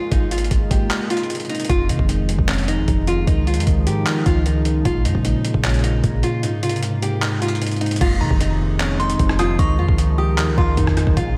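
A small, fingerpicked nylon-string guitar carries the melody through tape echo over a deep, detuned sawtooth pad in the background, opening this melancholic, eerie piece of half-time trap at 152 BPM in F minor. A boomy sine 808 bass and a gritty, pitched-down boom bap sampler kit arrive almost at once; the kit is overdriven and up front, with a thumpy kick, handclaps, hi-hat, rim click and crash. A mellow tine electric piano joins at 1.7 s over a cycle of Abadd9, Fm7, Dbadd9 and Bbm7, and at 8.2 s a delicate, warbling FM bell adds a tinkling second line with phaser and chorus, the mix soaked in dreamy hall reverb.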